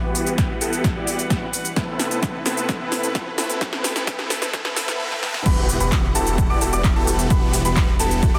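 Bright, earthy chamber strings and huge, lush detuned supersaw chords open this powerful, emotional festival progressive house piece at 130 BPM in E minor, both pumping through low-pass filters as a filter sweep moves across the supersaws, while a punchy overdriven kick and an up-front big-room kit of crisp hats, handclaps, shaker, snare and crash build through fills and a faint riser and swell toward the drop at 5.5 seconds, where a very quiet impact lands, a thick chorused saw bass sits in the background and tape-echoed grand piano arpeggios ring with long sustain over a dense, heavily limited master.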